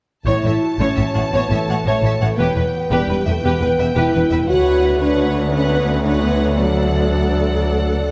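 Heroic, swashbuckling adventure film score in 12/8, where lush bowed violins carry the melody above a second violin line and distant violas, mellow French horns hold sustained chords, a very quiet, ringing harp plays thumb-plucked arpeggios, and expressive cellos with focused double basses anchor the bass, all set in a moderate scoring-stage reverb.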